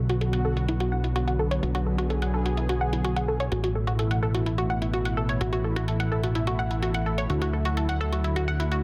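A lush, warbling unison pad with chorus holds sustained chords over a fat, sawtooth analog bass, moving from Bm to Asus2 to Dadd9 in this hypnotic, driving melodic techno cut at 127 BPM in straight 4/4. From 0.1 seconds a bright, detuned analog pluck spins arpeggios up front through chorus and tape echo, with a filter sweep running across the whole passage, while a soft, low-passed electronic hi-hat sits far back in the mix. Light reverb surrounds a dense, heavily limited modern master.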